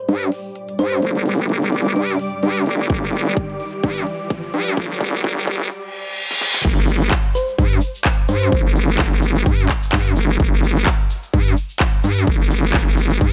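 Gritty and aggressive, this bass house excerpt at 128 BPM with a swung 16th feel builds for its first 6.6 seconds as a nasal, resonant vowel-sweep wobble bass with tube saturation and a big-room drum kit of huge snare, crisp hats and handclaps run under a filter sweep, joined by a blurred granular cloud pad, a riser and reverse cymbal, and a round, tine-like thumb-piano pluck with lush chorus and tape echo. A punchy electronic kick enters at 2.9 seconds with drum fills, and the drop lands at 6.6 seconds, where a grainy tube shaker joins and the pluck returns briefly over the pumping, up-front bass.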